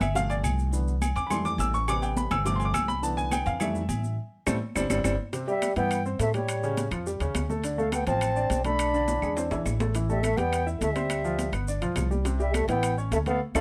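A cup-muted trombone carries the melody in this lively, sunny Afro-Cuban jazz excerpt, its soft, veiled, breathy tone giving the tune a vintage jazz flavor once it enters at 5.5 seconds. A bright, reedy concert flute arrives at the same moment with an airy second line, colored by vibrato and a gentle attack. Before that, the baby grand piano takes the spotlight in the opening as accompaniment, close and intimate with audible action noise and a short sustain. An up-front upright bass thumps beneath it with dark, woody gut strings played pizzicato. The percussion sits further back: ringing, high-tuned congas, metal-shelled agogo bells and timbales, compressed and saturated claves, and grainy, mellow maracas, with band accents and drum fills marking the turn near 5.3 seconds and the close at 13.4 seconds. The sound is dry and detailed, with little reverb.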